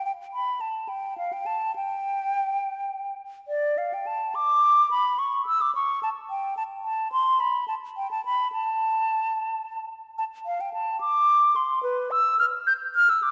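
The recording places a single concert flute close and up front, set in a wet scoring-stage reverb that lingers for about 2.0 seconds after each note. This is a classical, baroque-style fantasia for unaccompanied flute in 12/8, moving at 72 BPM in dotted quarters with a free, rubato feel. The mood is grave yet flowing, and the short excerpt runs for 13.3 seconds as part of a longer piece. The flute plays solo throughout, ranging from B4 up to G6, with a pure, hollow tone warmed by vibrato. Its tongued articulation stays distinct against the resonant space around it.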